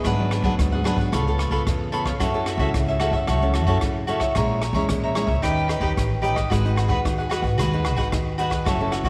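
Samba and choro at 111 BPM in a straight 4/4, this lively, joyful excerpt runs about nine seconds and is cut from a longer piece. A crisp, picked cavaquinho sits up front in the accompaniment, joined by a fingerpicked nylon-string guitar with fresh strings, a classical touch and audible finger squeak. Underneath, a pizzicato upright bass with steel strings supplies a woody low end, while a jazz brush kit adds hi-hat, rim click and a boomy kick. All four parts play together from start to finish. The harmony moves through jazz-inflected minor colours, from G#m7b5 and C#7alt to F#m7, then A#m7b5 and D#aug7 before settling on G#m7 at 6.5 seconds. A moderate echo chamber reverb of about 2.0 seconds and a studio ambience give the ensemble a roomy sound.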